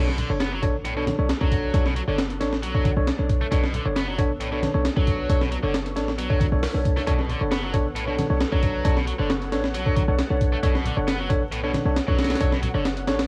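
A home cassette recording with vinyl crackle and light reverb frames this swaggering, funky breakbeat excerpt. Up front sits a gritty, compressed sampler-style drum kit with a thumpy kick, high-tuned snare and hi-hat, re-recorded in a small room, while a deep, boomy 808-style bass with tube saturation anchors the low end and acoustic congas sit in the background. A tight, picked distorted guitar riff and bright, clean tine electric piano stabs, both carrying tape echo, play over a swirling, detuned sawtooth pad that hovers behind with phaser, chorus and sidechain pumping.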